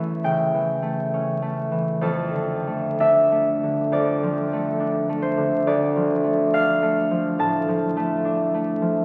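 Gentle and mysterious, this short classical excerpt for solo concert harp unfolds in D minor at a rubato 68 BPM in 4/4, with tuning set to A4 = 439 Hz. The harp plays alone from 0.0 to 9.0 seconds, spanning D2 to A5 with a thumb-plucked, ringing tone that sits up front. Its harmony moves from A7 over E to D minor over F at 2.0 seconds, settling on D minor at 5.7 seconds. A wet church reverb with a 3.4-second decay surrounds the instrument, lending it a spacious, cavernous halo. The sound carries the crackle and patina of a very old 78 rpm record, giving this fragment of a longer piece an aged, faraway character.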